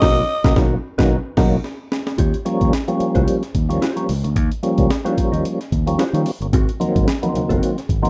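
Strutting and playful, this funk excerpt opens on a band accent, with a growling alto saxophone delivering a raspy, breathy, close-miked jazz-style line that lasts only until 0.6 seconds. Underneath, a fat, lightly overdriven tonewheel organ plays percussive stabs up front, its key click and chorus vibrato turning through a slow rotary speaker, while a dark, clean electric guitar adds fingered accompaniment bathed in spring reverb. A punchy fingered electric bass anchors the groove beside a gritty, pitched-up breakbeat kit with a thumpy kick, a high-tuned snare, hi-hat and crash, sounding compressed as if re-recorded in a large room. A drum fill leads into the next section at 2.2 seconds, where the harmony settles on Eb9 after the opening Bmaj7, and very quiet congas with a thick skin join at 6.5 seconds as the chord moves to Ab9. The swung sixteenth-note feel and light reverb give the rough home-demo mix a loose, lived-in bounce.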